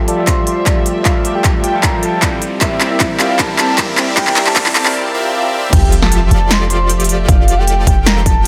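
Up front, a warm 808-style bass arrives at 5.7 seconds with the drop, its deep, boomy sine tone pumping with sidechain through the close of this euphoric, bright future bass fragment in F major, moving at 154 BPM with a half-time feel. Before it, the build-up is carried by a fat, detuned sawtooth polysynth riff under a filter sweep, touched with subtle chorus and sidechain pumping. A barky, overdriven tine electric piano with tape echo plays accompaniment until 5.8 seconds, while a very quiet, bowed studio string section holds smooth sustained chords beneath. A soft octave-layered synth lead sings the melody between E5 and C6, round and full-bodied through chorus, phaser and digital delay. Punchy electronic kick and a big-room kit with crisp hats, snare, handclaps and crash sit up front with a tape-warmed large-room sound, a drum fill and a brief break leading into the impact of the drop, as faint risers, swells and a sub drop move beneath Fmaj9 and C7 harmony in light digital ambience.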